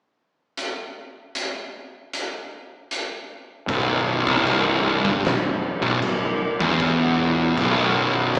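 An oversized, low-tuned acoustic drum kit opens this heavy, ominous stoner and doom metal excerpt at 0.6 s, its dark cymbals, fat snare and punchy kick sounding gritty and saturated up front in a big, pumping room at a slow 77 BPM in straight 4/4. At 3.7 s two thick fuzz guitars enter with a picked low riff, one very quiet and shadowy, the other distorted, up front and carrying a slapback echo, while a fingered electric bass adds overdriven, tube-saturated punch from the background. The whole performance comes across like a live gig heard through the venue's PA, with recital hall reverb and a small-speaker sound, running until the cut at 8.4 s.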